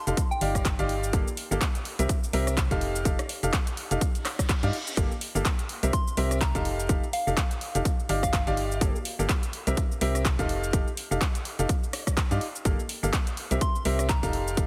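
Swung sixteenths drive this soulful, energetic piano house excerpt, where a punchy, overdriven kick and a house kit of handclaps, hi-hat, rim click and shaker, both re-recorded in a large room, sit beneath a clear, woody, slightly detuned upright piano riff carrying sidechain pumping and dub echo; a hollow, dark, organ-like FM bass pumps underneath, a soft, pure synth bell with chorus and dub echo drifts in briefly at 0.3, 5.9 and 13.6 seconds, and a reverse cymbal sweeps in at 4.2 seconds, the whole mix pressed into a heavily compressed radio sound over a looping progression of ninth and major-ninth chords.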